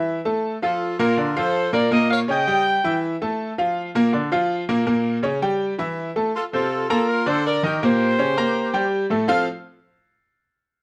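Latin tune in F major at 162 BPM, sunny and joyful, cut from a longer piece. A brilliant, woody upright piano carries the accompaniment up front throughout, with a polished, present tone and long sustain, while a punchy horn section with light vibrato and a smooth top states the pop-style melody from 0.6 s and returns at 6.3 s. The close, detailed sound sits in a moderate large-studio reverb, and the chords move through colourful turns such as Bbadd9, Eb7, Emadd11 and Bbm6 before settling back on F.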